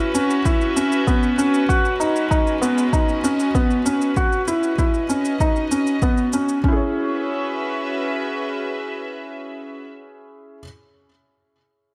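A felt-muted upright piano opens this moving, cinematic piano-and-strings electronica excerpt, playing a soft, mellow riff in C# minor at 97 BPM in a straight 4/4, its intimate tone up front with audible action noise and a trail of tape echo. A bowed studio string section enters at the same moment with sustained chords, their gut-string, reedy period-style tone carrying a smooth top while sidechain pumping makes the ensemble breathe against the beat. A produced electronic shaker slips in just after the start, and at 0.5 seconds a deep, layered electronic kick drum arrives, overdriven and re-recorded in a small room so it sits forward in the mix. The harmony moves from F#5 through G#sus4 and C#madd9, settling on C#m as the music shifts into a new passage at 6.6 seconds, when the drums soon fall away and the piano and strings carry on by themselves. A moderate echo chamber reverb wraps the whole piece in a spacious, filmic glow before it is cut off at 10.6 seconds.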